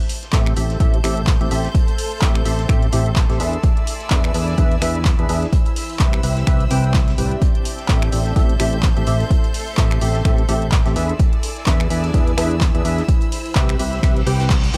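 A hollow, percussive organ stab carries the riff in this bittersweet, energetic piano house excerpt in A minor at 127 BPM, its chorused tone thickened by digital delay and pumping against the kick. Beneath it, a punchy, up-front electronic kick drives a swung 4/4 groove alongside a tape-warm analog drum machine of finger snaps, handclaps and hi-hat, with a very quiet vintage kit adding hi-hat and a warm, rolled-off snare. A fingered electric bass holds the low end with a warm, punchy tone and sidechain pumping. In the background, a clear, lush violin section sustains chords from the very start. A blurred, evolving granular pad joins at 1.3 seconds and drifts in its own reverb. The harmony cycles through Am7, E7 and Cmaj7, and a reverse cymbal rises at 14.2 seconds into a full-band accent at 14.5 seconds.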